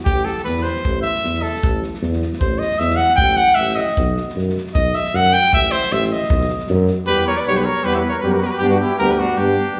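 Fiery and virtuosic, this excerpt of Balkan brass band folk moves in a brisk two-beat metre with a swung sixteenth-note feel. A clear, present trumpet carries the melody up front with pop-style vibrato, taking a solo over the opening seven seconds. Beneath it a warm tuba holds the bass line, with light vibrato, and a loose acoustic drum kit with a fat snare and tight kick drives the rhythm until 6.9 seconds. At 7.1 seconds the drums have dropped away, a second trumpet joins with a clear, classical-style line, and two euphoniums enter quietly in the background with a warm tone, one of them carrying a vintage character. The whole band rings in the reverberant space of a church or concert hall.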